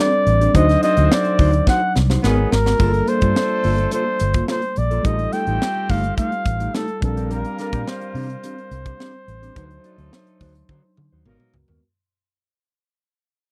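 Polished 1980s jazz-funk pop with an urban, slick mood, this short cut from a longer piece moves in a straight 4/4 and begins fading out almost at once, from 1.0 seconds onward. An up-front flugelhorn carries the melody with a soft attack and light vibrato in a mellow jazz style, while a distant, roomy horn section adds a second line in octave doubling in the background. A worn, slightly out-of-tune tine electric piano, lightly overdriven through a combo amp and bathed in lush chorus, supplies the accompaniment, and a dark, clean electric guitar plays a fingered riff, also with lush chorus. From 0.3 seconds a round, foam-muted vintage bass sits up front alongside a crisp, airy fusion kit with a high-tuned snare and tight kick, which plays fills at 1.7 and 10.7 seconds. Jazzy extended harmony such as Bb69, D7b9 and Abm9 colours the progression, and the dry, close 1970s-style studio sound keeps the parts intimate.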